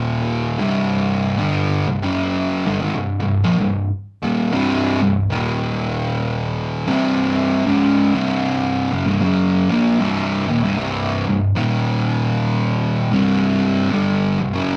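Brooding and sludgy, this slow swung metal excerpt in C minor at 77 BPM features a lone fuzz guitar, distorted, picked and double-tracked up front, grinding through Eb5 and C5 power chords and a C minor chord across its low range before a new section begins at 10.8 seconds, all set in a small, moderately reverberant room with the rough tube-saturated grit and lossy compression artefacts of a rehearsal-room recording.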